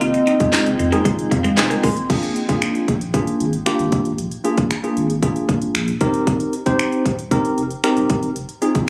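Caught on a phone amid club ambience, with light reverb and compression, this energetic, driving dance-pop excerpt runs at 115 BPM in a straight 4/4, tuned to A4 = 436 Hz and moving from Fm7 through Bb7 to Eb6. A punchy, up-front house kit with cracking snare, crisp hats, claps, finger snaps and crash pushes alongside a round, pumping sine sub bass, while a clean tine electric piano enters at 0.4 s to carry the accompaniment and plays a fill from 1.1 to 2.1 s. For the opening seconds, a hollow, woody clarinet-like synth lead with chorus, slapback echo and vibrato states a brief melody over a glassy, ethereal FM pad, a slightly broken-up picked electric guitar riff with analog chorus, and a jingly tambourine in the background, before the piano, bass and drums drive on alone from 2.1 s.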